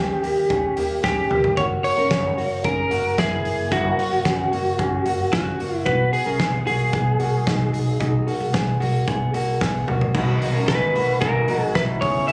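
An up-front, lightly driven lead guitar carries the melody in this wistful, bittersweet jangly indie pop cut from a longer piece at 112 BPM, over lo-fi picked arpeggios from an electric guitar through a small old amp, a woody pizzicato upright bass, and a loose drum kit with dark cymbals, a fat snare and a punchy kick that rolls through fills before a darker, phaser-tinged second guitar joins at 10.1 s, all heard as if captured on a phone in the room, bathed in club-like reverb.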